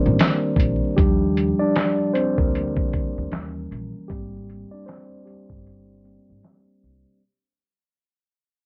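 Melancholic and reflective, this short lo-fi hip hop excerpt has a swung feel, with a mellow, low-passed tine electric piano soloing over Cm9, Ebmaj7, Eb7b9 and Abmaj9 chords, a woody pizzicato upright bass, and an up-front dusty soul sampler-style drum kit of handclaps, hi-hat, thumpy kick and fat snare coated in 12-bit grit, all under vinyl crackle, a filter sweep and a fade-out, with a break arriving at 5.7 seconds.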